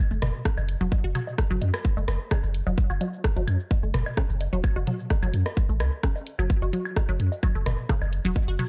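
A resonant, squelchy sawtooth blip pluck and a deep, punchy sine sub bass open this sparse, quirky minimal techno excerpt together at 129 BPM in F# minor, the pluck's detuned riff coloured by chorus, phaser and analog delay and pumping against the bass, which carries a pitch-drop attack and tube saturation. A garage kit of cabasa, hi-hat and rim click sits alongside a booming analog drum machine of toms, woodblock and rim click that sounds re-recorded in a large room, and a tight, tape-warm electronic kick arrives up front at 0.5 seconds. The whole cut has a dry, gritty hardware sound with the character of cassette tape.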